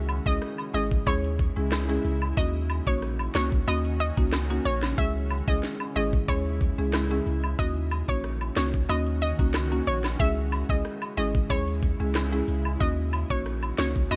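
Bouncy, hypnotic dancehall built on an electronic island pop kit with a knocking kick, sharp snare and metallic hats (the hats drop out from 5.0 to 7.6 seconds), a deep, punchy sine sub bass with a pitch-drop attack, close acoustic cabasa and woodblock, a woody, buzzing marimba on hardwood bars, a round, warbling analog pluck melody with chorus, and a faint, cloudy granular pad with sidechain pumping, all circling between Dbm and Ebm7 in a dry mix.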